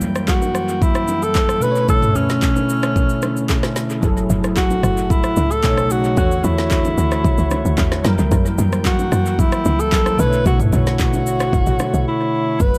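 This soulful, deep amapiano excerpt opens on an up-front electronic house kit with a woody snare, handclaps, rim clicks, shaker and toms, along with bell-like tine electric piano chords in ensemble chorus and dub echo, soft pipe organ flute stops with audible chiff in the background, and very quiet hard-handed congas and bongos. A breathy alto saxophone takes the solo melody from 0.3 seconds, mellow with light vibrato and scooped notes. A tight, punchy log drum bass with a fast attack and decaying notes arrives at 4.0 seconds beneath chords such as F#7b9 and Bm11, all in an echo-heavy mix with light studio reverb.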